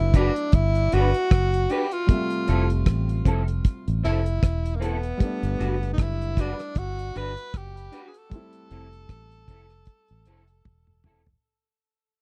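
A dry, close 1970s-style studio sound frames this sweet, smooth lovers rock reggae excerpt, fading out across its whole length, as a breathy, whispered tenor saxophone with light vibrato and tape echo carries the melody over Gmaj7 and Fmaj7 chords, a round, foam-muted fingered electric bass and a damped 70s drum kit with a tight kick sit up front, an electric guitar through a small old amp adds slightly broken-up, lo-fi stabs with ensemble chorus, a polished baby grand piano accompanies in the background, and a drum fill arrives at 10.7 seconds.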